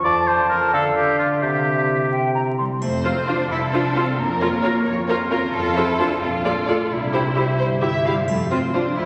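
A playful, whimsical cinematic film cue in F major, this short excerpt from a longer piece moves at 87 BPM in a straight 6/8 with a quirky, mischievous air. It opens with a small woodwind group: a clear, up-front oboe and a pure, silvery concert flute carry second lines over a mellow bassoon, while a ringing, fingerpicked harp sits in the background with arpeggios that run through the whole cue. Around 2.8 seconds the woodwinds give way to the string sections. A rich, focused violin section with a smooth top takes the melody, supported by an up-front viola section, a distant, expressive second violin line, and close, lush cello and double bass sections underneath. Midway through the string passage the harmony briefly darkens to a B-flat minor colour before the cue eventually settles back home on F. A dark, dry triangle adds faint touches at the start of the string passage and again near the end. 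The whole recording sits in a reverberant concert hall and carries a layer of vinyl crackle.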